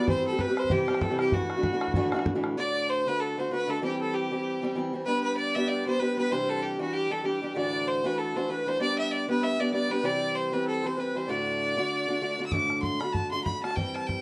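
A biting fiddle with light vibrato carries the melody up front, with a reedy, dark accordion in the background and a boxy fingerpicked archtop guitar accompanying from the start, all in a lively, cheerful Celtic reel with a swung lilt. A boomy bodhran drives the opening until 2.5 seconds, drops out, and returns at 12.5 seconds, just after the accordion stops at 12.3. Moderate studio reverb surrounds the playing in this short cut from a longer piece.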